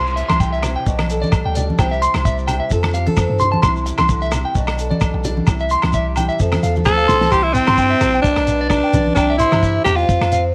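Sunny and joyful, this highlife guitar band passage swings lightly over a looping C, G/B and F progression. A boxy picked steel-string acoustic guitar and a clean electric guitar playing slapback-echoed arpeggios ride above a deep, punchy sub bass and a damped 70s drum kit with a fat snare and tight kick. Grainy shekere, ringing agogo bells and thin-skinned congas sit in the background, all inside a moderate echo-chamber reverb. At 6.9 seconds, alongside a drum fill, a raspy, gritty alto saxophone with vibrato takes the melody up front.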